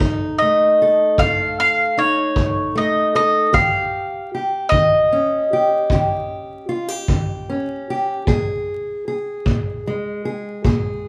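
A mellow, round mandolin carries the melody up front from 0.4 to 8.2 seconds, its double strings picked high over a dark, boxy fingerpicked parlour steel-string guitar and a punchy, brushed kick drum with a rolled-off top. This gritty, swaggering acoustic country blues moves at a slow 51 BPM in a straight 12/8, its chords shifting from F7 to Eb7 before settling on Absus2/Bb at 8.3 seconds. Cut from a longer piece, it sounds like a band playing live in one large studio room, with moderate reverb and a layer of vinyl crackle.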